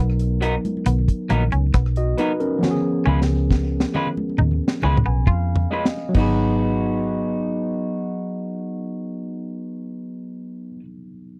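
A worn, slightly out-of-tune tine electric piano, a round, foam-muted fingered bass and a bright, twangy picked guitar with harmonic tremolo open this short cut from a longer lovers rock reggae piece, set at a slow 68 BPM in G# dorian with a smooth, bittersweet mood. The deep reggae drum kit joins almost at once, dry and dark with a high-tuned snare, tight kick and slapback echo. A lo-fi, slightly broken-up guitar through a small old amp adds compressed stabs, and very quiet, ringing congas sit in the background. The harmony moves from Bmaj7 to C#7, where a drum fill and a piano fill lead into a change to G#m7 at 6.2 seconds. The twangy guitar drops out just before this change, and shortly after it the drums and congas fall away, leaving piano, bass and the stab guitar to carry on. The sound is a 1970s-style studio recording with little reverb, with the punchy bass sitting up front.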